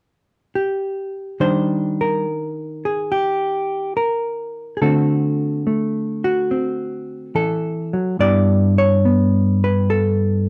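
Solo jazz in a relaxed, swinging 4/4 feel, this brief excerpt from a longer piece features a clean, dark hollow-body electric guitar played fingerstyle and placed up front, entering at 0.6 seconds and moving through Ebmaj7, D9 and G69 chords in a small, intimate room with a mellow production.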